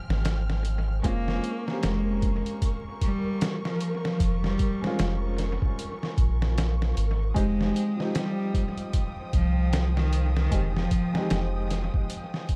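Steeped in vinyl crackle and heavy echo within a small room, this dark, cinematic trip hop fragment at 76 BPM in F minor, with swung sixteenths, sets a woody, intimate upright piano carrying tremolo, tape echo and 12-bit sampler grit over veiled, muted strings, while a round, deep dub sub bass and a compressed, pitched-down sampler drum kit with a thumpy kick sit up front, and a rich, close solo cello with vibrato enters at 1.0 s over chords moving between Fm9 and Bbm9/F.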